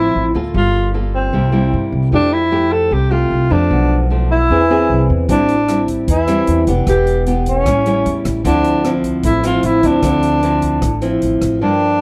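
A dry, close recording in a 1970s studio style, set in a small room, frames this smooth, wistful bossa nova excerpt cut from a longer piece. A breathy alto saxophone carries the melody up front, its whispered, intimate jazz tone shaped by light vibrato and a soft attack, though it also sounds distant and roomy. A fingerpicked nylon-string guitar accompanies in a dark classical voice with fresh strings and audible finger squeak, while a pizzicato upright bass with gut strings gives a woody, thumpy low end. A swinging big-band drum kit enters at 5.3 seconds, sitting lower in the mix with hi-hat, rim click and a punchy kick. At 11.6 seconds the bass drops out and a vibraphone played with medium mallets rings in the background with a metallic shimmer and medium motor vibrato. The harmony moves through rich minor ninth and seventh chords, passing a half-diminished and an augmented dominant before settling back on Dm9.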